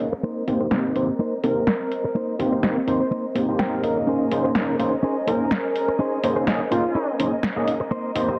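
Dense and heavily limited, this modern master sits in a light digital ambience, with a filter sweep running through the whole short cut from a longer piece. It is a nostalgic, groovy filtered disco house groove at 125 BPM in 4/4, swung on the 16ths and set in Bb dorian, moving from Cm7/Bb to Bbm11. Up front, an overdriven tine electric piano plays barky, gritty accompaniment through a combo amp and a phaser, beside a bright, clean, direct-recorded guitar riff that adds a short picked fill at 3.4 seconds. A punchy, tape-warm house kit of layered snare and hi-hats drives the beat, with both filtered, while a dark, woody violin section holds lush, bowed chords with vibrato in the background. At 1.4 seconds, a fat, detuned sawtooth synth brass enters with a bold melody, thickened by chorus and trailing into dub echo.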